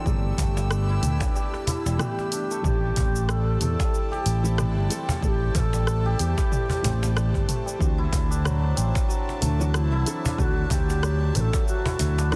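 A growly, up-front fretless electric bass anchors this mystical, earthy organic downtempo piece at 93 BPM, its sidechain pumping set alongside a punchy electronic kick, a layered deep house kit of hi-hat, rim click, shaker and toms with softly clipped snare, and a snappy, saturated cajon. A shimmering hammered santur spins arpeggios through digital delay over a felt-muted upright piano, dark and intimate with audible action noise, and a reedy, gut-strung chamber string section holding pumping sustained chords. A breathy bass bansuri enters at 1.7 s with vibrato and a soft attack, its delayed melody moving over a swung groove in A minor pentatonic as the harmony shifts from G69 to Am7 at 2.6 s and D9 at 7.8 s, all under a dense, heavily limited master.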